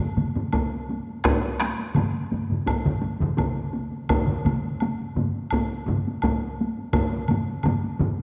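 A straight 4/4 pulse at 84 BPM drives this short, ceremonial cut from a longer Japanese traditional taiko piece, with three taiko ensemble parts struck with hard and heavy sticks sounding from 0.2 to 8.2 seconds, one compressed and saturated, another in a small room, the third in a live room. Solo taiko drums, also played with hard sticks, join at 0.5 seconds and sit up front yet distant in a large room until 7.1 seconds, while a woody, compressed woodblock sits quietly beneath. A long concert hall reverb wraps the whole performance in a resonant, driving atmosphere.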